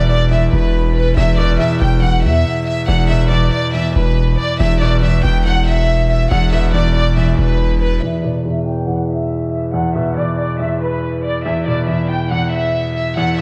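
Hip hop in a trap style at 140 BPM with a half-time feel, this melancholic, eerie cut-out pairs a floating, sul tasto violin section carrying the melody through a low-pass filter and analog delay with an intimate grand piano whose clear low accompaniment reveals audible action noise, over a heavy, saturated 808-style bass that drops away at 8.0 seconds as a filter sweep runs to 13.4 seconds, the dreamy mix soaked in lush hall reverb.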